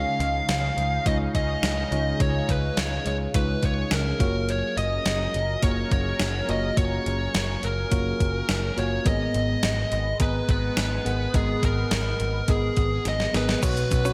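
A bright, glossy digital production with lush hall reverb frames this uplifting 1980s-style pop excerpt at 105 BPM in F# major, moving through C#add9, F#maj7 and G#madd9 chords. A dark, distorted fuzz lead guitar carries the melody up front over a mellow FM electric piano, a detuned sawtooth pad with chorus in the background, and a picked electric bass. A thumpy, fat-snared 12-bit drum machine with gated reverb enters at 0.2 seconds and plays a fill at 13.1 seconds, before a very quiet, compressed clean electric guitar riff and a grainy tube shaker arrive at 13.6 seconds on a Bsus2 chord.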